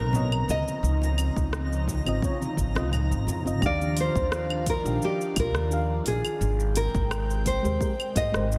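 Blissful and unhurried, this sunset chillout excerpt moves at 86 BPM in Eb major with a gentle 16th-note swing, its chords drifting from Dbmaj9 to Ebmaj9 at 3.6 seconds and on to Abmaj9. An up-front, fingerpicked nylon-string guitar carries the melody with a classical touch and a digital delay, while a woody, thumpy pizzicato upright bass on gut strings anchors the low end. A round, warbling FM electric piano with chorus and tremolo fills in the harmony, and an airy, breathy pad with chorus and phaser sustains soft, detuned chords beneath it. The deep house kit brings claves, metallic hi-hat, rim click and shaker with a tape-warm, small-room character, joined at 1.4 seconds by an overdriven electronic kick with a deep body. Very quiet, distant congas played with soft hands sound only until 3.4 seconds, and a twinkling granular shimmer lasts through the opening 3.6 seconds, after which the groove settles under a light reverb.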